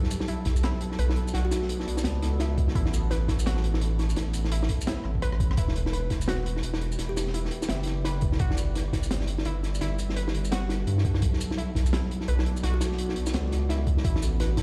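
Tense and heavy, this half-time drum and bass excerpt at 170 BPM swings its sixteenths over a dark cycle of chords beginning on Bm7, anchored by a thick, saturated sine sub bass up front and a gritty, pitched-down electronic kick that enters at 0.5 seconds. A crunchy acoustic breakbeat kit with a high-tuned snare, rim click, shaker and hi-hat rattles through a small room with a rolled-off top, breaking into a fill at 5.0 seconds, while a warbling, lo-fi pluck spins arpeggios through chorus, phaser and tape echo. Deep in the background, a moody detuned sawtooth pad pumps against the sidechain beneath its built-in reverb, and a woody, hollow kalimba drops brief echoed notes, the whole mix sounding as if played through a big system in a bare room.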